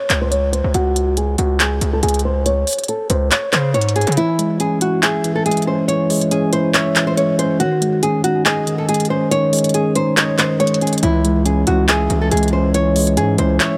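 A half-time trap beat at 140 BPM drives this hard-hitting, menacing hip hop excerpt in C# harmonic minor, with crisp hats and handclaps up front while a heavy, saturated 808-style bass drops out at 4.2 seconds, when the kick also falls silent, and returns at 11.0 seconds. A small, fingerpicked nylon-string guitar carries the melody through a low-pass filter sweep and digital delay, and from 4.2 seconds a mellow, clean tine electric piano adds accompaniment. The harmony moves from C#m to G#sus4 and back in a dry, close sound.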